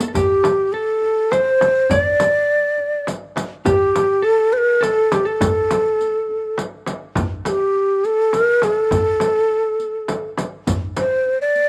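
A breathy, end-blown reed-cane ney carries the melody up front, close-miked with a crisp attack and a vibrato that gives this Persian modal ensemble piece its soulful, longing character. Set in dastgah shur on A, the music moves at 103 BPM in a straight 3/4, with the ney ranging from G4 to D5. Beneath it, a dark, clean hollow-body electric jazz guitar plays a fingered second line in the background across the same range, falling away at 6.5 seconds. The percussion is played with soft hands: a band-limited, vintage-toned tombak sits in the background, a large, deep frame drum gives weight, and a close, dry riq adds bright jingles. Light reverb surrounds the ensemble, and the passage, cut from a longer piece, moves into a new section at 7.2 seconds, carried by ney and percussion alone.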